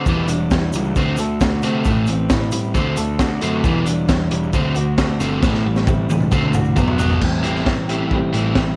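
A gritty, room-soaked indie rock excerpt at 134 BPM sets a restless, moody tone, with clean and overdriven electric guitars picking riffs over Em7, D7 and Am7 chords while a fuzz-driven bass sits in the background, a raw garage drum kit with a punchy kick, high-tuned snare and dark cymbals stays up front and plays a fill from 5.4 to 7.2 seconds, and a grainy tube shaker rattles softly until 7.2 seconds, when the music shifts to a new section.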